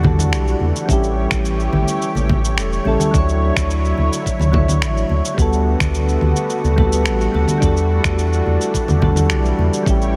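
Light reverb and a digital ambience wrap this relaxed sunset chillout excerpt in E dorian, moving at 107 BPM in a straight 4/4 through Em11, A7, Dmaj9 and Gmaj9/D before returning to Em11. Soft, round electric-piano-like synth keys shimmer with chorus, tremolo, tape echo and a low-pass filter over a lush, thick, detuned unison pad with an airy noise layer, while a deep, mellow sine sub bass holds the low end. A gritty, overdriven sampler-style kick with a thumpy punch drives the groove alongside compressed electronic congas, shaker and finger snaps, and a very quiet set of bright acoustic congas sits distant in a large room.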